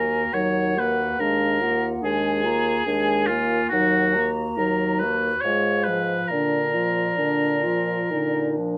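An up-front, clear oboe with vibrato sings a second line beneath a hollow, pure, close-miked flute melody in this melancholic, yearning slow romantic movement for wind quintet in a rubato 3/4, cut from a longer piece, with a smooth-topped French horn and a warm clarinet as accompaniment and a dark bassoon on the bass, all set in moderate studio reverb.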